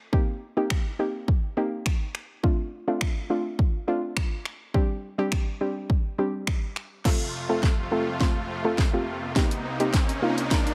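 Euphoric and carefree, this dance-pop excerpt rides a straight house kit with a punchy kick, cracking snare, bright hats and finger snaps, overdriven and up front, beneath a soft, round pluck whose detuned, chorused tone pumps against the beat. At 7.1 seconds a build-up begins with a drum fill, huge lush supersaw chords enter at 7.0 seconds with their own sidechain pumping, and a riser sits in the background from 8.0 seconds. The whole sits in a digital ambience, cut from a longer piece during the build-up.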